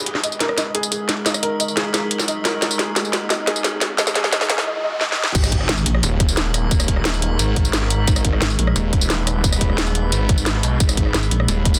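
A snarling, detuned saw bass growls through distortion and tube saturation from 5.3 s, when this dark, mechanical stretch of technical drum and bass in G# minor at 176 BPM drops onto a tight electronic kick, an impact and short bursts of a pulsing, chorused wobble bass, after a build-up in which a soft felt-muted upright piano plays intimate arpeggios through tape echo, a low-pass filter and sidechain pumping over an eerie, metallic FM drone, a very quiet riser and swell, and a layered kit with cracking snare, metallic hats, rim clicks, tambourine and crash, set in a dense, heavily limited mix with moderate digital room reverb.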